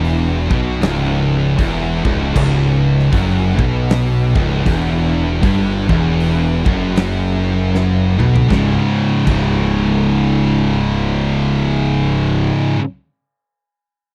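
Hypnotic and heavy, this dry, close stoner and doom metal excerpt with a lazy swing stacks a bright, double-tracked high-gain guitar over two dark, thick fuzz guitars in the background, all playing the low riff while a round, overdriven fingered bass sits up front and a big rock kit with a fat snare and punchy kick hits a fill at 7.7 seconds before dropping out at 9.5 seconds, as the harmony shifts from C#m to C#5.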